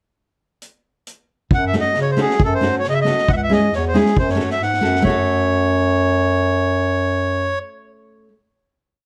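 A fiery, virtuosic Balkan wedding band piece in a brisk, straight 2/4, opening with a street-band drum kit alone at 0.6 seconds, its boomy kick, medium-tuned snare and hi-hat giving a small-room, rolled-off feel. At 1.5 seconds a reedy, clear accordion enters up front with hook-based motifs bathed in plate reverb, joined by a bass clarinet playing root and fifth on the main beats. Moments later, at 1.7 seconds, a full-bodied nylon-string guitar comes in, fingerpicking close-voiced off-beat chords in a classical style. The dark, warm production moves between F#m and C#m before closing on a final chord, the guitar ringing on alone until 8.3 seconds.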